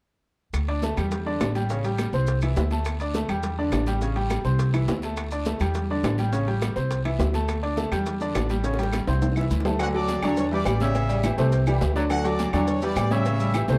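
Festive and danceable, this salsa cut from a longer piece runs at 208 BPM in D major, with a woody, thumpy pizzicato upright bass and a brilliant grand piano up front over a background bed of high-tuned congas, tight bongos and cowbell, ringing timbales and agogo bells, claves, raspy guiro and grainy maracas. The chords cycle through Dsus2, Em7, A7 and C, and a drum fill at 8.6 seconds leads into a new section at 9.8 seconds, where a punchy trumpet section takes the melody while a smooth-topped trombone section with light vibrato carries a second line beneath it. The production is dark with light reverb, the bass carries a gut-string depth, and the brass brings a bright, pop-style edge.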